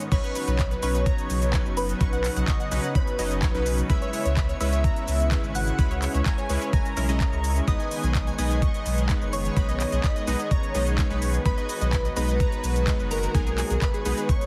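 Heavily compressed, radio-style sound with light reverb frames this bittersweet, driving progressive house excerpt, where a knocking electronic kick and a thick, saturated sub bass sit up front beside a tape-warm big-room dance drum kit of crisp hats, cabasa, handclaps and crash, while a bold, detuned unison lead with vibrato and dub echo carries the melody over a warbling, vintage unison pad, punchy supersaw stabs and decaying unison pluck arpeggios that all pump with the sidechain, as a soft synth bell second line drifts in the background and a very quiet twinkling granular texture shimmers above chords moving from Badd9 to C#m7 to G#m.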